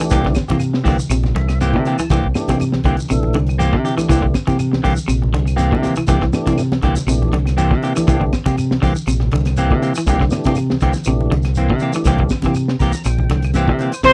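A driving afrobeat groove at 121 BPM in 4/4, with a light swing on the sixteenths, carries this joyful passage in C mixolydian over a C7 chord. A crunchy, gritty breakbeat kit with a high-tuned snare, tight kick and rolled-off top anchors it, while a fingered electric bass sits up front, joined by very quiet thick-skinned congas, a grainy shekere and woody claves in the background. A semi-hollow guitar adds dark, clean stabs, and a bright, twangy guitar at the edge of break-up picks low arpeggios further back. A fat tonewheel organ with key click and a slow rotary speaker supplies accompaniment, breaking into fills around 1.1 and 12.5 seconds, with a brief drum fill along the way. At 14.1 seconds a punchy, up-front horn section with vibrato strikes a high note over a very quiet, clear trombone section, all captured in a dry, close 1970s-style studio sound.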